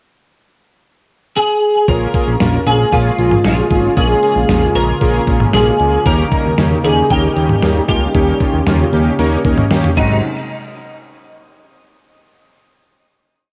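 A twelve-string electric guitar opens this bright, nostalgic synth-pop piece at 1.4 s, playing twangy, up-front call phrases through ensemble chorus, cassette tape, analog delay and shimmer reverb. At 1.9 s the rest of the band arrives over Bbm7 and Eb7. Bold, fat analog synth brass plays close-voiced eighth-note chords with vibrato, a glossy pulsing synth bass keeps up eighth notes, a shimmering pulse-width pad sits in the background, and a detuned 8-bit drum machine drives a thumpy, sampler-style beat with syncopated toms. An Ab7 chord leads into the final hit at 10.2 s, all set in a moderate spring reverb with the character of a home cassette recording.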